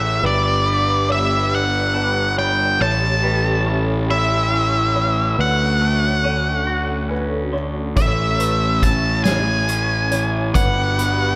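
In a slow, straight 6/8 lilt, this euphoric, cinematic post-rock fragment puts a dark, fuzz-drenched octave lead guitar up front, carrying the melody with slapback echo, over a gritty overdriven picked bass. Further back, a lush, detuned unison pad holds thick sustained chords through chorus and phaser, while a soft, felt-muted upright piano with audible action noise and a clean, twangy, scooped electric guitar weave arpeggios beneath. A distant, roomy soft-mallet drum kit with a punchy kick enters at 8.0 s, all within a light small-room ambience.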